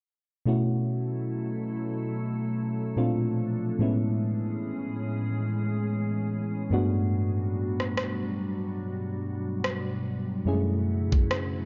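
A soft, mellow FM electric piano, round and full-bodied with a noise layer and chorus, carries this longing, late-night contemporary R&B excerpt at 72 BPM with a 16th-note swing, moving through B7sus4, A#maj7, Amaj7, Gmaj7 and F#m7 over a glassy, ethereal FM pad from 1.2 seconds, before a smooth electronic drum kit with a knocking kick and rim click enters at 7.8 seconds, all set in a dark production with light reverb.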